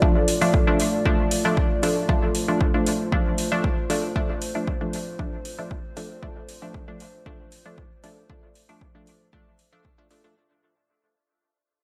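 A dark analog pad, a filtered dub chord stab and a punchy electronic kick all begin together at the start of this hazy, meditative slice of dub techno, cut from a longer piece in a steady, straight four. The pad holds sustained, moody chords with a slow attack and long release, its detuned, wave-folded tone thickened by a lush chorus and a sub octave, and sidechain pumping makes it breathe with the beat. Up front, the muted, deep stab plucks short, decaying chords through chorus, phaser and dub echo, also pumping under the sidechain. The overdriven kick sits forward in the mix, and metallic, overdriven hi-hats join at 0.3 seconds. The whole fragment sits on a single minor chord inside light reverb, with some lossy compression artefacts, and it fades out across its full length of roughly 10.4 seconds.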